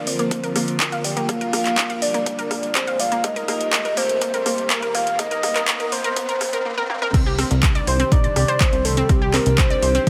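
This bittersweet, driving progressive house passage in C minor at 123 BPM opens on a mellow, octave-layered synth lead carrying the melody over a morphing wavetable pad of sustained chords treated with phaser and built-in reverb, while a riser hovers in the background. A bright, detuned unison pluck spins arpeggios through digital delay, and both pluck and lead pass through filter sweeps as the build-up moves from Bb to Eb/Bb. A deep house drum kit with metallic hats, handclaps, rim clicks, toms and crash sits up front with an overdriven edge, anchored by a deep electronic kick. After a drum fill at 6.9 seconds, the drop lands at 7.1 seconds on a Cmadd9 chord, where a punchy, funky analog bass enters. Sidechain pumping makes the lead, pad, pluck and bass breathe with the kick, and light reverb with digital ambience frames this excerpt cut from a longer piece.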